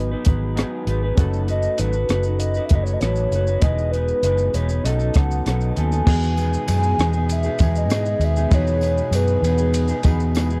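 Indie bedroom pop at 98 BPM in E major, hazy and nostalgic, where a hollow, woody clarinet-like synth lead with tape echo carries the melody over a slightly broken-up lo-fi electric guitar, chorused analog keys in the background, a round foam-muted bass and an up-front cocktail drum kit with a punchy kick, shaker and rim click, while a bright jingly tambourine joins at 6.1 seconds and a very quiet warbling tape-like pad enters at 7.0 seconds, all captured in a dry, close 1970s-style studio sound.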